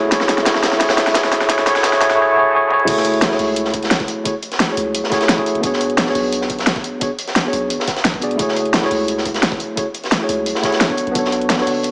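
Liquid drum and bass with a dreamy, rolling feel, heard in a clip cut from a longer piece. A worn, slightly out-of-tune tine electric piano sits up front from the start, its mellow chords trailing dub echo through F#m9, E13 and Bm9 harmonies. The opening build-up brings a drum fill and a filter sweep before the drop lands at 2.9 seconds, where a deep, sine-like 808-style bass enters in the background with long, decaying notes. The drums are layered: a crunchy breakbeat kit with a dark, gritty tone, a high-tuned snare and a rolled-off top; an overdriven pop kit placed up front with a fat snare, crash cymbal, hi-hat and toms; and a knocking electronic kick with overdrive. The whole mix is bathed in a wet scoring-stage reverb and high-pass filtered to a small-speaker sound.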